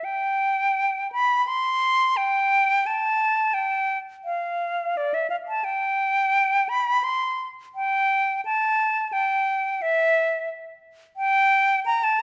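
Rubato phrasing stretches a loose 4/4 pulse around 86 BPM, giving this baroque-style classical fantasia a flowing feel. A single concert flute carries the whole piece, set up front and close-miked, moving between D5 and C6 across its 12.2 seconds. Its tone is airy and bright, with soft attacks and an expressive vibrato that lend the line a radiant glow. A moderate recital hall reverb, with a decay of 1.4 seconds, surrounds the instrument with a gentle sense of space. Tuned slightly low at A4 = 437 Hz, this short passage is cut from a longer work.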